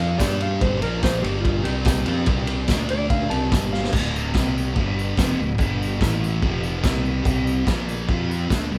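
Recorded as a band playing live in one room with light reverb, this menacing, raw garage rock cut drives along at 144 BPM in a straight 4/4. A clean lap steel carries a shadowy slide melody through the opening 3.9 seconds over a bright, double-tracked fuzz guitar riff up front and a round, overdriven fingered bass. A gritty, saturated acoustic kit with a punchy kick and dark cymbals plays a fill at 3.7 seconds, while a jingly tambourine sits in the background as the chords move through G, C and D.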